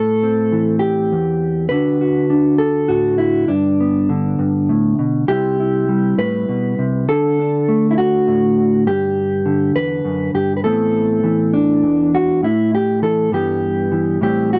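Melancholic and haunting, this brief folk passage in 6/8 features a solo fingered electric guitar, dark, clean and compressed, sitting up front in a close, dry 1970s-style studio sound with light digital reverb as it moves through chords such as Am7, D, G and C before shifting to a new section at 12.4 seconds that closes on Em/G at 13.3 seconds.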